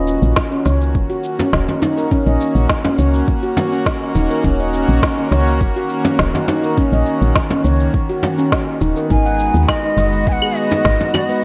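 This meditative, earthy organic downtempo excerpt opens with a dark chamber string section holding sustained chords, their nasal, reedy gut-string tone pulsing with sidechain pumping beneath ringing, airy handpan arpeggios trailed by delay. A woody FM bass sits up front, round and dark with a fast attack that then decays. Electronic drums arrive almost at once: an overdriven shaker, woody snare and claves set in a large room, joined by a soft kick re-recorded in a small room. From 1.4 seconds, a close, dry frame drum played with hard hands adds warm acoustic texture. At 9.1 seconds the harmony moves from Ebm7 to Abm7, and a breathy, end-blown ney enters with a warm, expressive, tongued melody, its vibrato echoing through delay over a light room reverb.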